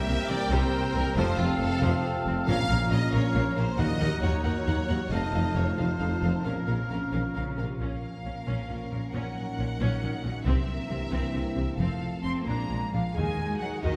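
A heroic adventure film score cut from a longer piece, swashbuckling and determined, moves at 90 BPM in a straight 6/8 in Bb harmonic minor, with lush bowed violins carrying the melody over a second violin line, rich violas in the background, and a low end of cellos, double basses and, until 7.7 seconds, a tuba. A clear, close oboe, a mellow distant clarinet and a pure flute section add second lines that drop out at 7.6 seconds, the flutes returning at 12.2 seconds, while very quiet dark horns and tight trombones hold sustained chords and a ringing, thumb-plucked harp spins arpeggios. Dry timpani sound briefly from 2.5 to 3.1 seconds, and the whole ensemble sits back in a wet scoring-stage reverb as the harmony drives through C7, F and Bbm toward a closing Ebm.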